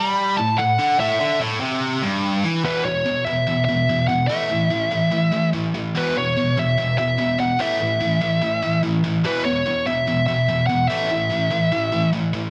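A straight 4/4 rock pulse at 145 BPM in A major drives this energetic, anthemic clip from a longer piece, where a bright, double-tracked high-gain guitar riffs low and up front for the full 12.5 seconds, shifting after 2.6 seconds from an unharmonised opening to alternating E5 and A5 power chords, while a dark, distorted high-gain lead guitar carries the melody between B4 and B5 with a slapback echo until 12.1 seconds, all set in light digital reverb within a dense, heavily limited modern master.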